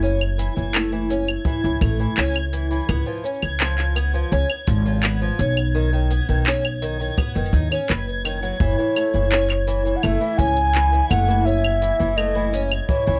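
Light reverb gives this intimate, autumnal folktronica excerpt a close, gentle space, set at 84 BPM in a straight 4/4 in F# dorian as the harmony moves from F#m7 to C#7 to B and back. A dark, shimmering fingerpicked twelve-string acoustic guitar plays arpeggios through a low-pass filter and delay, above a woody pizzicato upright bass that sits up front. An overdriven electronic kit of claves, handclaps, smooth hi-hat and shaker runs beside a bright, dreamy reversed texture, a boomy brushed kick drum joins at 1.5 seconds, and at 8.6 seconds an airy wooden baroque flute with vibrato, a soft attack and delay takes the melody.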